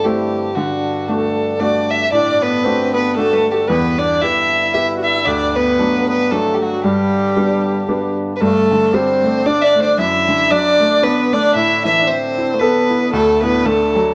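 Set back in a roomy, reverberant studio with a softened, dulled top end, this bright and cheerful Celtic folk fragment lilts in a swung three-beat metre. A dark, woody fiddle carries the melody up front with light vibrato and a smooth top. Beneath it, a reedy, mellow accordion holds a low drone and a clear upright piano with short sustain provides accompaniment. From 2.1 s a warm, classical-style tenor saxophone with vibrato adds a second line, and the harmony moves to a fresh passage at 8.4 s.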